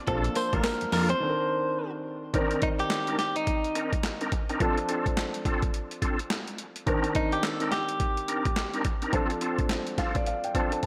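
This R&B cut in a new jack swing style, taken from a longer piece, feels confident and bouncy, with a swung sixteenth-note groove. A gritty, overdriven sampler-style drum kit sits up front, with a thumpy kick, a medium-tuned snare, handclaps, hi-hat and tambourine, all treated with gated reverb. A fat sawtooth analog bass and a scooped clean guitar riff in the background open the track, but both drop out by 1.2 seconds, where a break begins. A polished baby grand piano carries the accompaniment throughout, while a reedy tonewheel organ adds stabs with key click, chorus vibrato and a fast rotary speaker. Up front, a picked, direct-recorded electric guitar plays the melody with spring reverb and delay. After an opening Bbmaj7, the chords move between Cm9 and Dm7, and the piano closes with a fill from 9.7 seconds, all within a light reverb.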